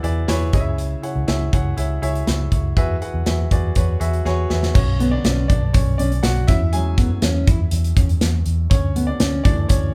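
Lightly reverberant, this short cut from a longer piece sounds like a band playing live together in one room, tuned to A4 = 438 Hz. It is hopeful, warm piano-driven pop at 121 BPM in a straight 4/4, moving through chords such as E, C#m, Eadd9, Bmadd9, E6 and Dsus2. The clear, present baby grand piano carries the accompaniment. A dark, round, foam-muted vintage electric bass sits underneath, amped and punchy. An up-front modern studio kit, airy and polished with a tight kick and medium-tuned snare, adds hi-hat and crash and plays a fill at 4.3 seconds. The piano takes a solo at 4.8 seconds, and a full-bodied fingerpicked dreadnought steel-string guitar joins at 5.0 seconds with a dusky riff, its finger squeaks audible.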